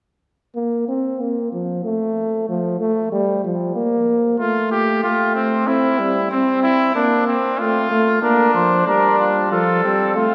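A clear, up-front trumpet enters at 4.4 seconds as the second voice in this stately, joyful imitative classical canzona for brass ensemble at 94 BPM in 3/4, joining a smooth-topped trombone with light vibrato that has carried the accompaniment since 0.6 seconds, before a mellow, soft-attacked cornet takes the melody at 8.2 seconds from a distant, roomy spot, all within a church reverb lasting 3.0 s.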